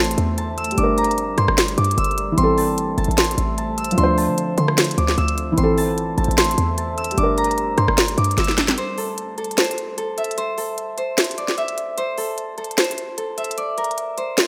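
A half-time trap beat at 150 BPM in 4/4 drives this eerie, hard-hitting hip hop passage, cut from a longer piece. The electronic kit sits up front with a sharp snare, crisp hi-hats and rim clicks, while a punchy, tight 808-style bass with a fast attack and decaying sine tone thumps beneath it. A ringing, fingerpicked Celtic harp carries the melody through a tape echo. A soft, felt-muted upright piano plays intimate, mellow accompaniment with audible action noise, and a deep, detuned sawtooth pad with chorus hangs dark and moody in the background over chords moving between Am, Gm and Dm7. After a drum fill, the piano, pad and bass drop out at 8.8 seconds, leaving harp and drums in a break that runs to 14.5 seconds. A lush hall reverb surrounds the rough home-demo mix.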